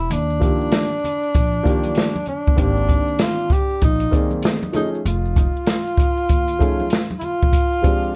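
The sound is dark and warm, set in a moderate studio reverb that gives this short jazz-hop cut a relaxed, easy mood. At 97 BPM in 4/4 with a swung sixteenth-note feel in Eb major, an open jazz drum kit sits up front, its boomy kick, medium-tuned snare and hi-hat coated in vintage 12-bit sampler grit with a rolled-off top. A woody, growly upright bass plucks low beneath it, and a boxy upright piano with short sustain voices the chords from Ebmaj9 to Abmaj9#11, F7alt and a rootless Bb13. Leading the way from the opening second, a breathy tenor saxophone plays the melody in subtone with light vibrato, scooped notes and a soft attack, trailed by an analog delay. Maracas and congas ring in the background with hard, close and dry hands, while the bass drops out at 7.5 seconds and the saxophone and piano carry on to the 8.2-second cut.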